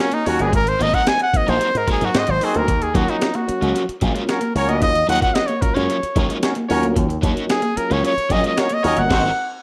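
A close-miked, jazz-style trumpet with slapback echo carries the solo melody up front through this driving, sly funk fragment at 112 BPM in Eb dorian, backed by a vintage horn section in octaves, a lightly overdriven tonewheel organ on slow rotary stabs with key click, a clean picked guitar riff, a gritty, pitched-up breakbeat kit with a thumpy kick, a bright, punchy envelope-filtered slap bass, and a crunchy overdriven guitar with harmonic tremolo entering at 0.8 seconds, all in a rough home-demo mix that closes on a band accent at 9.1 seconds.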